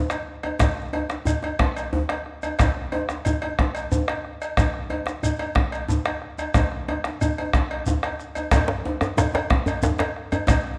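A moderate recital-hall reverb surrounds this short, driving, earthy fragment of West African traditional drumming in a straight 12/8 feel. A deep, dark bombo sits up front with a medium-tuned djembe buzzing with metal rattles, while a metallic cowbell and a grainy, mellow shekere fill out the ensemble. At 8.5 s a second djembe joins, close and dry with soft hands, adding a warm, deep voice for the closing section.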